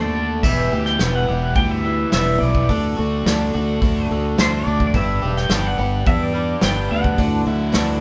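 The recording has the feel of a band playing live together in one small, reverberant room, a short cut taken from a longer folk rock and heartland rock piece with a warm, open-road mood. A twangy pedal steel guitar carries the melody in a clean, compressed voice, played with fingerpicks and slide and shaped by volume swells. Beneath it, a picked twelve-string acoustic guitar shimmers with fresh, octave-doubled strings, while a bright, overdriven electric guitar, double-tracked and compressed, plays a riff. A fingered electric bass sits up front with a warm tone, and a soft brush kit joins at 0.4 s with dark cymbals, a medium-tuned snare and a tight kick. The straight 4/4 groove moves through Em, D, G and Dadd9.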